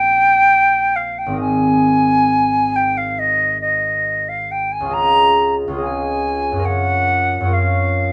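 Flute and harp enter together in this brief, mysterious and wistful impressionist classical fragment, cut from a longer piece and played with a free, rubato feel. The silver concert flute carries the melody up front with a pure, expressive metal tone, vibrato and a crisp attack, yet with a slightly distant quality. The concert harp's warm, fingerpicked, ringing accompaniment sits equally close and spans a broad range, all in light reverb with a gently rolled-off top, as the harmony drifts through Bbmadd9, Abadd9, Dbadd9 and Gbmaj7.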